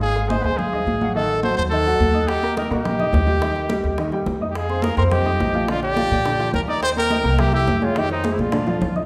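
Sophisticated and lively, this brief Afro-Cuban jazz passage moves at a brisk 212 BPM in straight 4/4, with a clear, up-front trumpet carrying the melody, light vibrato and scooped notes included, while a breathy, reedy concert flute traces a crisp second line in the background. A warm baby grand piano supplies short-sustained accompaniment over a woody, thumpy pizzicato upright bass on gut strings, and soft-handed, high-tuned congas with a thick, vintage skin drive the groove, joined at 2.3 seconds by tight, dry bongos struck with hard hands in the background. The whole ensemble sits in the lush reverb of a recital hall, moving through jazzy changes such as Fm7, Bb6 and C7 before a drum fill at 8.4 seconds.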